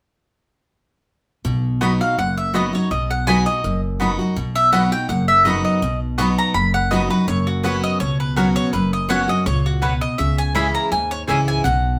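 A bright, full-bodied picked steel-string guitar and a dark, pizzicato upright bass open this driving, joyful bluegrass cut at 1.4 s, swinging lightly at 165 BPM in B major. A mandolin adds stabs from 1.8 s, and a second mandolin takes the double-strung melody at 2.0 s, as the chords move from B to F#sus4 and C#m. The band plays live in one room with moderate studio reverb, and the cut is taken from a longer piece.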